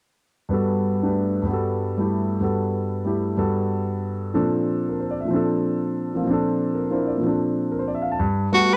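Close, detailed microphones and light reverb frame this short jazz fragment in 3/4 with a swung feel, its mood searching and open. A clear grand piano with long sustain carries the accompaniment up front from 0.5 s, moving from Gmaj9 to Bbmaj9 and back to Gmaj9. A bright, breathy soprano saxophone with vibrato steps forward for the melody only at 8.5 s, just as the piano part draws to a close.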